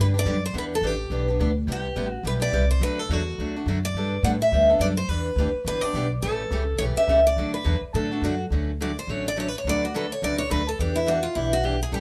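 Charming and playful, this clip from a longer piece of acoustic string swing in the jazz manouche style moves at a brisk 211 BPM with a lilting swing on the eighth notes. A picked steel-string acoustic guitar carries the melody up front with a bright, boxy parlour tone and the snap of fresh strings. A second picked acoustic guitar supplies the accompaniment with a warm, auditorium-sized body, and its finger squeaks add a lively, handmade touch. Beneath them, a pizzicato upright bass with gut strings sits up front, its woody, dark and thumpy sound anchoring the harmony. The opening passage moves through changes such as G, Em7, Cmaj7 and A7 before settling into D major at 8.5 s, where the lead guitar takes a solo over Dmaj7, Bm7/D and Em7. A moderate studio reverb gives the trio a sense of shared space, though lossy compression artefacts are audible.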